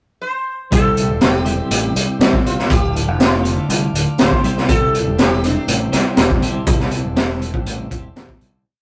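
Psychedelic rock with a hypnotic, mysterious mood, opening on a short pickup before the full band comes in at 0.7 seconds under a buzzing, shimmering sitar that spins a free-flowing melody over a Cadd9 and Dm progression. A raw garage drum kit sits up front with a high-tuned snare and punchy kick, joined by a growling overdriven bass playing a syncopated riff, a compressed twelve-string electric guitar with tremolo ringing chords in the background, a very quiet overdriven combo organ holding a sustained pad, and a faint jingly tambourine from 1.2 seconds. The rough rehearsal-room sound carries light reverb and warm saturation, and the whole piece fades out from 6.7 seconds.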